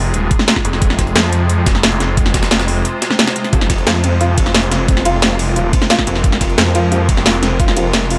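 A straight 4/4 pulse at 177 BPM drives this tense, mechanical slice of dark technical drum and bass in F minor, where a knocking electronic kick and an up-front kit of cracking snare and metallic hats ride over a very quiet, gritty breakbeat layer, a snarling, growling distorted saw bass holds the low end on Fm, a swarming granular drone pumps in the background, and from 3.5 seconds a felt-muted upright piano adds soft, intimate arpeggios with audible action noise and tape echo.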